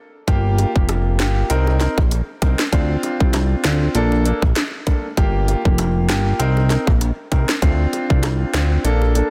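Dense, heavily limited and set in a small room, this tough, sultry, swung dancehall fragment from a longer piece pairs an up-front electronic drum kit of tight kick, sharp snare, dark hi-hat, rim click and handclaps with a fat, detuned sawtooth analog bass, while a clear grand piano with audible action noise plays Gm7, Cm7, Dm7 and Bbmaj7 chords and high-tuned bongos sit in the background.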